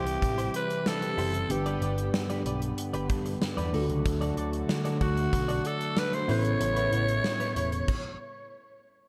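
A dark, warm production sits in a lush hall reverb, opening on a glossy, romantic stretch of 1980s-style pop at 94 BPM in D major, cut from a longer piece. Up front, a breathy, raspy alto saxophone carries the melody with vibrato and scooped notes, its tone trailed by digital delay. A mellow tine electric piano plays the accompaniment, while a brassy, detuned analog pad with a soft attack and chorus holds sustained chords in the background. A clean, direct-recorded electric guitar picks a compressed riff behind them, bathed in lush chorus and delay, over a round, overdriven picked electric bass. The gated 80s drum kit brings a punchy kick, medium-tuned snare, hi-hat and bright crash cymbals through a big gated room. The harmony moves through C, G, D and Aadd9 before the band stops around 7.9 seconds, and the saxophone rings on until 8.5 seconds.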